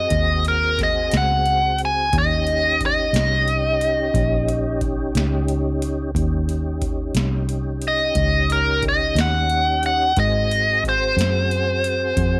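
A biting, overdriven lead guitar sits up front, carrying the melody between Bb4 and Ab5 in a rollicking yet laid-back slow blues in 12/8 at 60 BPM (counted in dotted quarters), in Eb mixolydian with a straight feel. A smooth tonewheel organ holds sustained chords with chorus vibrato, key click and a slow rotary speaker, while a dark, round, foam-muted fingered electric bass and a booming analog drum machine keep time; the drum machine, with its deep kick, crisp snare and metallic hats, sounds re-recorded in a large room. The harmony moves from Ab7 to Eb7 at 2.1 seconds and returns to Ab7 at 10.2 seconds in this dry-sounding excerpt cut from a longer piece.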